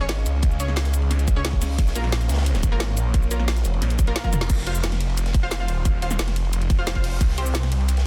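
The rhythm drives in straight 4/4 at a relentless drum and bass pace, built from a tight, up-front electronic kick that arrives at 0.4 s, a layered drum and bass kit with a woody snare, bright hats, crash, ride, shaker and toms, and a crunchy breakbeat kit sitting gritty and saturated in the background with dark, rolled-off cymbals. This dark, aggressive fragment of technical drum and bass is cut from a longer piece. Underneath, a snarling distorted saw bass growls up front, detuned and compressed with a moving notch and sidechain pumping. A bold, punchy orchestra-hit-like synth stab cuts through with a bright, noisy edge, a filter sweep and dub echo. A deep, moody ambient pad hangs behind in sustained chords, wave-folded and ring-modulated with chorus and pumping, dropping out at 4.5 s. A drum fill at 4.2 s and a band accent at 4.4 s launch the second drop, all pressed into a dense, heavily limited master with little reverb.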